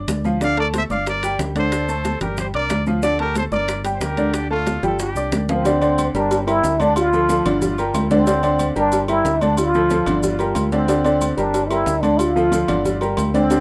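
A plunger-muted trombone takes the lead from 5.5 seconds, its bright, wah-wah voice carrying light vibrato and a tape echo, its sound distant and roomy even as it sits up front. Before it, a clear, punchy trumpet section with a smooth top states the opening melody, cut from a longer passionate, danceable salsa piece. A worn, woody upright piano, slightly detuned, plays the accompaniment throughout, joined by a dark, round fingered electric bass. Behind them, tight high-tuned bongos and cowbell, thin-skinned congas, ringing metal-shell timbales with agogo bells and grainy maracas fill out the percussion, with a drum fill around 4.8 seconds leading into the second section as the harmony moves between G minor and D minor. The whole has the rough, lightly reverberant feel of a home demo mix.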